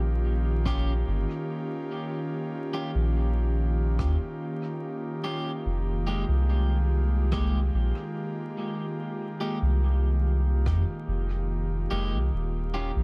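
Ambient dub at 72 BPM in F minor, this hazy, spacious passage from a longer piece drifts between Eb9 and Fm11 chords. An airy, breathy pad with chorus holds sustained chords over a round, up-front sub bass, while a slightly broken-up electric guitar adds dub-echoed stabs from 0.7 s. An overdriven electronic kick and an echoing rim click sit in the background until 10.8 s, all within an echo-heavy, dry mix flecked with vinyl crackle.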